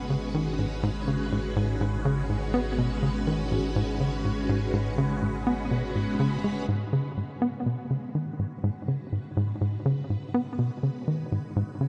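The recording sits in a vast, echoing space, bathed in a long cathedral reverb that gives the music a cavernous sense of depth. This fragment of ambient, sequencer-driven space music carries a mysterious, expansive mood over a steady, straight pulse. Up front, a tight sequencer bass drives a punchy riff with a dark, plucky filter snap and decaying notes, trailed by tape echo. Behind it, a phased string machine holds sustained chords with a slow attack and long release, its bright, swirling vintage tone shaped by ensemble chorus and phaser. A deep, round sine sub bass anchors the bottom from the start, then stops at 6.7 seconds as the piece moves into its second section, leaving the strings and the sequencer riff to carry on.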